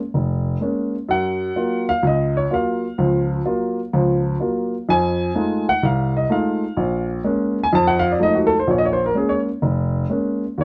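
Solo jazz in B-flat minor, this short excerpt from a longer piece has a smoky, swinging mood at 126 BPM in 4/4, with a swung feel on the eighth notes. A single upright piano carries everything, sounding from 0.1 to 10.6 seconds and ranging from deep F1 in the bass up to A5. Its tone is warm and woody, with long sustain, and it sits up front in the mix. The harmony moves from Bbm7 through Gbmaj7 to an altered F7#9, returning to Bbm7 and touching F7#9 once more before the opening section comes around again on Bbm7 at 8.7 seconds. Light reverb and a dark, warm production give the recording a late-night, intimate atmosphere, and the tuning sits slightly above standard pitch, at A4 = 445 Hz.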